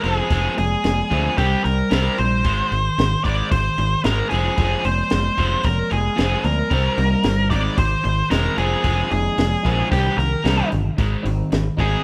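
An octave-fuzz lead guitar with tape echo carries the melody up front over a dark, overdriven electric guitar riff, a round picked electric bass and a compact cocktail drum kit with a high-tuned snare and punchy kick. The piece is a bittersweet, restless indie rock excerpt at 112 BPM, moving through Fm, Ab, Cm7 and Abmaj7, and at 6.7 seconds a slightly broken-up guitar through a small old amp with subtle chorus joins in the background of the rough home demo mix with light reverb.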